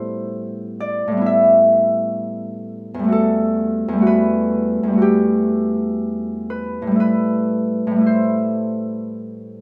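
A Celtic harp rings up front in a wet stone room, its warm fingerpicked tones spanning E2 to E5 in this gentle, mysterious classical excerpt for solo harp, played rubato in 4/4 over Am9, Emadd9 and Am7 chords and tuned to A4 = 443 Hz.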